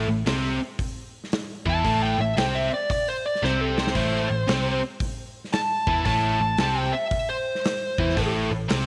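A small room reverb lends a light, close ambience to this gritty, brooding blues rock and southern rock excerpt, a power trio riding a swung 114 BPM groove in A minor over a single A minor chord. A biting, double-tracked overdriven guitar drives the riff up front alongside a dark, round, foam-muted electric bass, while a big acoustic drum kit with a punchy kick and medium-tuned snare comes in at 0.3 seconds and plays a fill at 3.4 seconds. From 1.7 seconds a dark, compressed fuzz lead guitar takes the solo melody, sitting up front with distortion.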